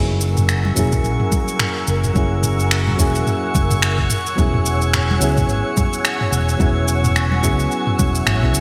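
Soft, rounded electric-piano-like synth keys with a filter sweep, a silky phased string machine and a dark, punchy fretless bass open this relaxed sunset chillout excerpt together, soon joined by a tape-warm, up-front deep house kit of finger snaps, shaker and toms, a glassy, drifting harmonics texture, very quiet close congas, and a deep layered electronic kick entering at 0.9 seconds, all within a lush hall and a bright 1980s-style digital sheen.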